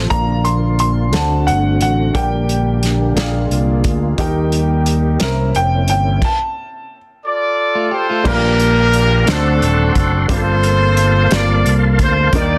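In a slow, straight 6/8 lilt, this jubilant, hopeful gospel excerpt sets a fat-snared, tight-kicked soul drum kit and a punchy, up-front fingered electric bass under a woody upright piano and a background tonewheel organ with slow rotary speaker and chorus vibrato, while a very quiet, classical-style French horn section holds chords until 6.2 seconds, a clear, worn grand piano carries the melody until 7.0 seconds, a distant, roomy pop horn section takes over the tune from 7.3 seconds, and a clean, picked electric guitar adds a brief second line, the mix sitting in light small-room reverb under a dense, heavily limited master.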